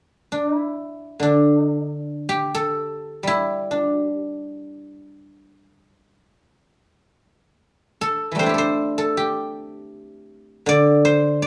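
Set in a small room with light reverb, this pastoral, flowing piece of Chinese traditional music features a solo guzheng, up front and played with fingerpicks, whose ringing, silvery tone carries from 0.3 s before the music moves into a new section at 7.6 s.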